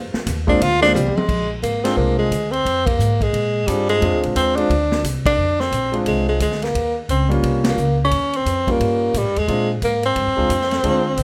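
A bright, forceful tenor saxophone sits up front with a jazz-style vibrato, carrying the melody in this swinging, warm slice of small-group swing and bop, cut from a longer piece. Beneath it, a woody upright bass plucks a thumpy, steel-stringed line while a clear concert grand piano with a deep low end supplies the accompaniment. The drum kit has a natural studio-room sound, with a medium-tuned snare, punchy kick, ride, hi-hat, crash and toms driving the swing feel. A drum fill at 0.9 s leads into the main stretch, where the band lands several accents together. The harmony rests on Bb9, moves to Eb9 at 6.7 s and returns to Bb9 at 9.5 s, all set in a moderate large-studio reverb.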